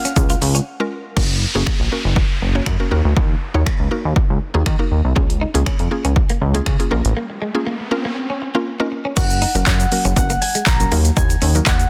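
Dance-pop with a summery, euphoric mood, this short cut opens with a fingerpicked Celtic harp ringing over a woody, round synth pluck with sidechain pumping, while a punchy, overdriven house kit of kick, handclaps, finger snaps, hi-hat, shaker and crash sits up front beside a glossy, nasal chorused synth bass. Through the middle stretch a downlifter and riser sweep across the mix, with a break around 7.2 seconds, and a bright, direct-recorded clean guitar riff with lush chorus returns at 5.2 seconds. The harp melody and a very quiet, grainy egg shaker return at 9.2 seconds, all under light reverb and a dense, heavily limited master.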